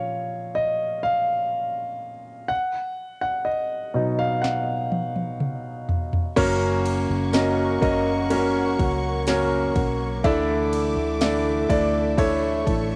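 Cassette home-recording character and a small room's light reverb frame this tender, emotional excerpt from a 62 BPM pop ballad, where an intimate, up-front grand piano with audible action noise plays alone over A#m and B chords until an overdriven R&B drum kit with a soft kick and sharp snare enters with a fill at 4.4 seconds, and at 6.4 seconds the music moves to F# and later Dsus2 as lush, woody bowed strings with vibrato, a dark nylon-string guitar fingerpicking arpeggios through analog delay in the background, and a round, foam-muted vintage electric bass join, followed at 7.3 seconds by a very quiet, jingly tambourine.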